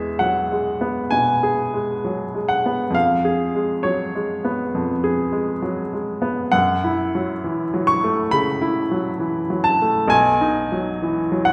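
A bright, woody upright piano plays alone from the very start, a nostalgic and dreamy romantic nocturne in E major at 66 BPM in 4/4, phrased with a loose rubato. Its polished, brilliant tone has a short sustain, and the harmony moves from E through C#7/E# and F#m7 to settle on B at 10.1 seconds. A wet recital hall reverb surrounds the instrument and places the listener further back in the room, and this short passage is cut from a longer piece.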